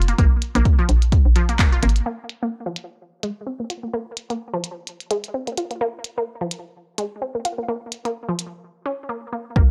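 A dry, gritty hardware sound with cassette-tape character and transformer saturation frames this sparse, quirky slice of minimal techno at 128 BPM in 4/4, swung on the sixteenths. It opens on a drop where a hollow, bouncy FM bass with a fast, knocking attack pumps against a punchy, tape-warmed analog kick, both up front, and the full band lands an accent at 1.6 seconds. A minimal click drum kit of clicky hi-hats and handclaps, re-recorded in a small room and softened by low-pass filtering, ticks along underneath until 8.5 seconds. The star is a bright, squelchy blip pluck built from a detuned sawtooth, sine and a noise layer, warbling through a phaser and analog delay with sidechain pumping. From 2.1 seconds a filter sweep works on its resonant, juicy tone, the kick having dropped out at 1.7 seconds and the bass at 2.0, both returning only in a brief hit at 9.6 seconds.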